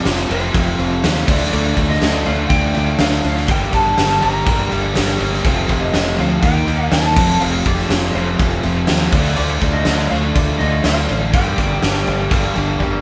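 A straight 4/4 pulse at 122 BPM drives this swaggering, brooding classic rock passage in G minor. An up-front acoustic drum kit with a fat snare and punchy kick in a stone-room ambience plays alongside a bright, direct fingered electric bass. Three picked, overdriven guitars riff in the background over F, Dm, Gm and Eb chords: one crunchy and double-tracked with spring reverb, one compressed with tremolo, and one raw and garage-toned. Above them, a warm, slightly broken-up, compressed slide guitar carries the melody until a drum fill at 12.8 s.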